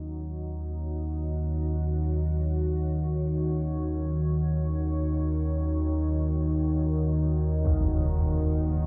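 In free time and Eb minor, this dark ambient drone excerpt holds a desolate, dark mood on a single Ebm chord. An evolving, mellow analog drone of sawtooth and pulse-wave tones with pulse-width modulation and chorus sits up front in the low register, while a deep, moody pad of detuned sawtooth and sine unison with a sub octave and moving notch sustains chords higher up, both with slow attacks and long releases. A huge, bright impact lands at 7.7 s through a low-pass filter, and the whole cut is bathed in a wet cathedral reverb with a cassette tape character.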